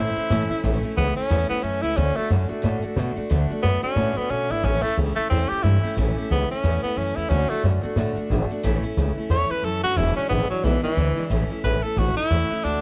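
A swung 180 BPM rockabilly tune in 4/4 and A major drives this upbeat, retro fragment of a longer piece, its woody, thumpy gut-string upright bass sitting up front and plucked pizzicato from the first second to the last. Over it a clear tenor saxophone takes the solo melody with pop-style vibrato and a touch of tape echo, while a bright, full-bodied steel-string acoustic guitar is picked beneath, finger squeaks audible, through changes moving from A to D and an E7 before returning to A at 11.3 seconds. The small room sound is close and dark-edged, with the top end rolled off.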